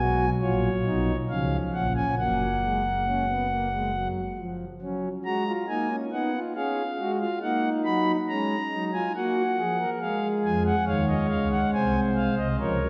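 Contemplative and serious, this excerpt from a longer classical work is a baroque-style four-part fugue for solo pipe organ, moving at 69 BPM in a straight 3/4 in F# major. The organ speaks through a principal stop with a warm, smooth, romantic voicing, sitting up front and spanning from F#1 at the bottom to B5 at the top. The harmony opens on C#7 over B and settles through C# and F#, then later passes through F# over A# and C# before closing on G# over B#. A second section begins at 4.8 seconds, and the fragment runs to 12.9 seconds. The sound is heard from further back in a concert hall, with a long 2.3-second reverberant tail that lets the voices blend and linger.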